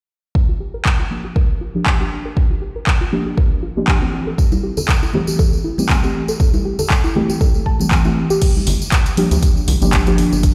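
Heard through a big sound system in a bare stone room, this moody deep house excerpt sets a layered, up-front electronic kick under an overdriven analog drum machine of crash, handclaps and hi-hat, with a soft, round pluck arpeggio pumping through chorus and delay, mellow wave-folded chord stabs moving from Gm7 to Am7, bright close congas and a jingly tambourine joining around 4.4 seconds, and a rubbery, nasal square bass arriving at 8.7 seconds.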